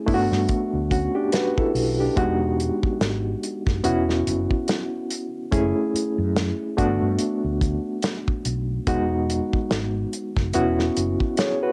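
A dry, cassette-recorded home sound with lossy artefacts frames this short cut from a longer piece of lush, bittersweet and smooth 1970s-style soul at 72 BPM with a swung sixteenth feel, where a barky, reedy electric piano with light overdrive and fast tremolo sits up front through its built-in speakers over a dark, round fretless bass with subtle chorus and a tight, rolled-off soul drum kit of hi-hat, kick and snare, moving through chords like Gmaj9, Emaj9 and F#m9 before settling on E69 near 10.5 seconds.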